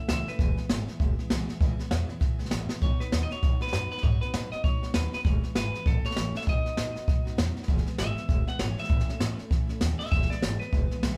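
Up front, a brush drum kit with a boomy kick and medium-tuned snare drives this rowdy, upbeat rockabilly cut at 197 BPM in E major, with a gentle swing on the eighths in 4/4, tuned slightly sharp to A4 = 444 Hz. A thumpy, woody upright bass with gut strings anchors the low end while a full-bodied dreadnought acoustic guitar is picked in the background, its finger squeaks audible. The twangy clean electric guitar briefly opens the melody, returns at 2.8 seconds after a drum fill, and takes a solo from 7.7 seconds over a live-in-one-room sound with light reverb.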